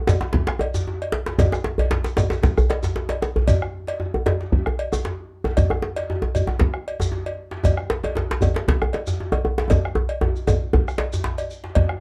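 West African traditional drum ensemble music at 116 BPM in a straight 4/4, powerful and earthy, where a deep, up-front bombo anchors two tight, cracking djembes (one up front in a small room, one distant in a large room), with a metallic, dry cowbell and a grainy, mellow shekere all sounding together from the start in a dark production, before a drum fill arrives at 9.7 seconds near the end of this short cut from a longer piece.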